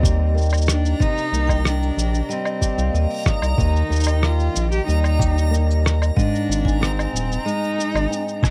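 A round, wave-folded analog bass sits up front in this pastoral, hopeful folktronica excerpt at 93 BPM in Eb major, beneath a woody bowed cello melody with digital delay, fingerpicked flamenco guitar arpeggios, a bright vibraphone second line struck with hard mallets and bathed in plate reverb, a thumpy, muffled electronic kick, a pitched-down shaker, woodblock and rim click, and a reversed, granular swelling texture in the background, over chords of Eb, Cm7 and Ab.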